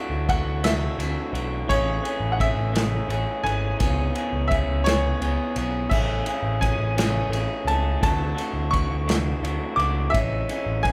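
Recorded live by a band in one room with light reverb, this wistful, jangly indie rock fragment in 6/8 sets a bright, woody, slightly detuned upright piano melody with audible action noise over a twangy, slightly broken-up, lo-fi guitar riff from a small old amp, a growly overdriven picked bass up front, and an acoustic kit played with bundle sticks that joins at 0.3 s, all moving through Dadd9, Amaj7 and C#m7 chords.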